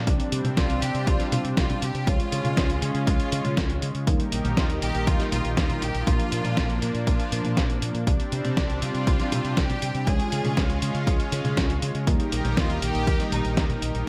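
A straight 4/4 pulse at 120 BPM drives this bittersweet, melodramatic italo disco excerpt, with a punchy, dry electronic kick and a gritty, compressed sampler-style kit of hi-hat, snare and toms in small room ambience with gated reverb. A fingered electric bass with an envelope filter runs underneath, while a lush, warbling detuned unison pad holds sustained chords with chorus and a dark, round synth brass adds stabs in the background with a cassette tape tint. From 0.6 seconds a clear studio violin section carries the melody with vibrato and digital delay over a cycle of Csus2, Db, Eb and Bb.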